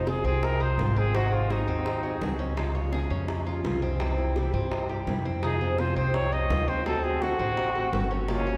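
A wet church reverb hangs a long, spacious tail over this short cut from a longer Cuban son and guajira piece, its mood sultry and warm. Up front, a breathy trumpet carries the melody with a soft attack, vibrato and a whispered, intimate, vintage tone, playing from the start, pausing at 2.4 seconds and returning at 5.4 seconds. Beneath it, a woody, thumpy upright bass plays pizzicato close to the listener, while a boxy, picked archtop guitar supplies accompaniment. The Cuban tres adds arpeggios on its metallic, partly octave-doubled strings, and tight, high-tuned bongos struck with hard hands sit distant in the large room from 0.1 seconds. The harmony moves from Fm7 through Ab7, Db and C before returning to Fm7 and closing on D7.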